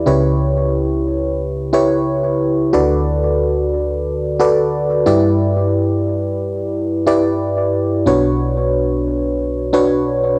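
A glassy, bell-like FM electric piano plays alone and up front through this short, urgent and moody pop fragment in B minor at 90 BPM with a light 16th-note swing, its full-bodied, decaying tones carrying a noise layer, chorus and analog delay as the chords move from C#m7b5 through D6 and G6 before settling on Bmadd9 at 8.1 s, all heard through a moderate spring reverb on a home cassette recording.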